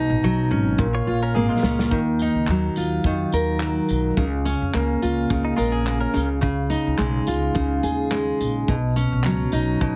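Heavily compressed with a radio-like sound and light reverb, this excerpt of wistful, reflective acoustic pop moves at 106 BPM in Eb minor with a gentle sixteenth-note swing. A full-bodied, up-front dreadnought acoustic guitar carries the picked accompaniment over a woody, growly pizzicato upright bass. A loose indie kit with a tight kick, snare, handclaps and tambourine comes in at 0.8 seconds with a fill, while a twangy, clean, direct-recorded electric guitar adds short second lines at 0.9 and 5.4 seconds as the chords move through Ebmadd9, Bbm/Db and Dbadd9.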